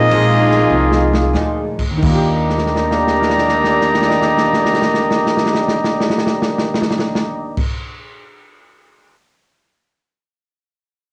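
Big band swing in Eb major at 85-105 BPM, this joyful, brassy fragment slows down over a Bb7sus4 before settling onto Ebmaj7 at 2.0 seconds, with an up-front trumpet section carrying the melody in a dark, lightly vibrato tone with plate reverb and cassette-tape colouring, a distant, roomy trombone section on the second line, a woody pizzicato upright bass, a very quiet, intimate grand piano with audible action noise, a faint, clean, compressed hollow-body archtop guitar, and a boomy, rolled-off drum kit that adds fills at 0.7 and 2.4 seconds and plays on until 9.2 seconds.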